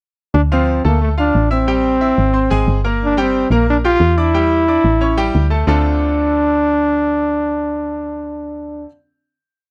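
A punchy, up-front trombone carries a motif-based, song-like melody with light vibrato and a smooth top in this short, danceable salsa piece in D minor at 180 BPM. Beneath it a round, woody FM bass plays a driving tumbao that anticipates the chords, while a brilliant grand piano, entering at 0.5 seconds, adds a polished montuno in octaves with short sustain. The close, dry 1970s-style studio sound, touched with light reverb, moves from the verse through a progression including Am7, Gm7 and A7 to a final Dm7 chord at 5.7 seconds.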